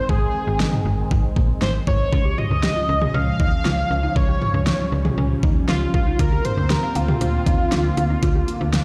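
A straight 4/4 pulse at 118 BPM drives this nocturnal, melancholic synth-pop fragment, with an up-front, overdriven pop drum kit of knocking kick, fat snare, hi-hat and toms alongside a snappy, metallic slap-like FM bass over a chord movement from Ab to Db and then Bbadd9/D. A bold, retro octave-doubled sawtooth-and-triangle lead carries the melody with vibrato, chorus, phaser and delay, while a thick, airy unison pad sustains chords in the background. From 2.1 seconds a detuned unison pluck adds flanged, delayed arpeggios behind it all, and the whole mix sits in a large studio reverb, as if played through a big sound system in a bare room.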